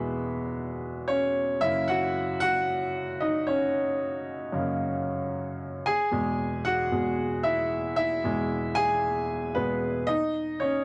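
A solo baby grand piano, warm, open and up front in a dry, close 1970s-style studio sound, carries this earnest, dramatic pop fragment in straight 4/4, spanning its low register and its upper reaches, moving from E to F# and back to E before the harmony falls away at 10.1 seconds.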